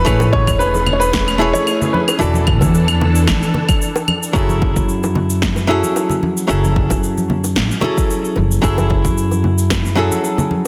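Sunset chillout in F# minor at 112 BPM, this wistful fragment of a longer piece moves with a gentle 16th-note swing. A grand piano with audible action noise carries the melody through tape echo for the first 3.8 seconds, beside a silky, warbling string machine that holds slow-attack chords under ensemble chorus until 4.3 seconds. Up front, a clean, hollow-body archtop guitar, picked and compressed with its own tape echo, accompanies across the whole fragment, while a woody, dark pizzicato upright bass anchors the low end. A deep, overdriven electronic kick and a punchy, overdriven snare layered with electronic claves and cabasa drive the groove, re-recorded in a large room, as ringing bongos and congas played with soft hands sit close and dry in the background. The harmony drifts from Amaj7 to E7sus4, then after a brief break settles on F#m9 at 4.4 seconds, all wrapped in a lush hall reverb and a dense, heavily limited modern master.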